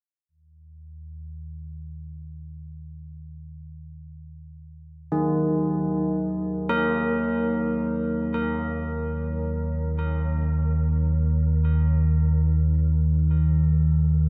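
This dark ambient drone excerpt drifts in free time, with an unsettling, cavernous mood. A deep, ominous drone rumbles up front from 0.5 s, its detuned sawtooth and triangle tones swelling in slowly and hanging on with a long release in the low Eb register. At 5.1 s, bronze carillon bells enter with ringing, delayed arpeggios that carry a minor-third overtone and an iron-clapper bite, all bathed in a dreamy, cathedral-sized reverb.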